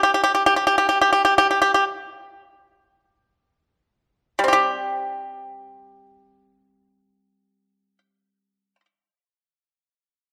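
Chinese traditional solo plucked-string music, contemplative and full of longing, in which a bright, dry, percussive pipa played with fingerpicks sits up front alone from 0.0 to 8.9 s in a loose rubato around 40-52 BPM, slowing through its first 4.5 seconds within a G3-to-G4 range, set in a dark production with moderate recital-hall reverb in this fragment cut from a longer piece.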